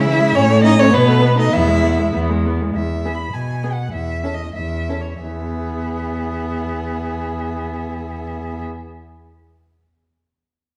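In a flexible, rubato 2/4, this quick classical-period string quartet movement feels urgent and stormy, and it is cut from a longer piece. It pulls back, slowing from about 2.1 to 5.2 seconds before settling onto an E chord, after passing through A, B7 and E harmonies. The first violin carries the melody high and up front with a smooth, even vibrato tone, while the second violin sings a close, expressive inner line with soft attacks and portamento. A focused, slightly distant viola fills in the accompaniment, and a close, full-bodied cello anchors the bass as the most prominent voice. All four players bow with vibrato, heard on a moderate scoring-stage reverb in a dark, warm production.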